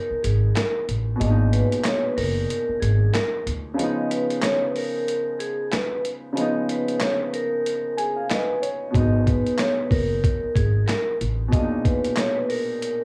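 A vibraphone and a concert grand piano open this reflective, dark boom-bap hip-hop excerpt together. The vibraphone carries a ringing, metallic melody with a slow motor vibrato, colored by plate reverb and analog delay, while the warm piano accompanies with deep bass in its lower notes. An upright bass comes in at 0.1 s, plucked pizzicato with a woody, thumpy acoustic tone, drops out at 3.7 s and returns at 8.9 s as the harmony settles back on G#m9 after a stretch on C#9. Underneath, a gritty, compressed, pitched-down sampler-style drum kit plays kick, medium-tuned snare, hi-hat and handclaps with a swung sixteenth-note feel, sounding as though re-recorded in a large room. The whole track sits in a modest small-room ambience, with the drums, bass and piano placed up front.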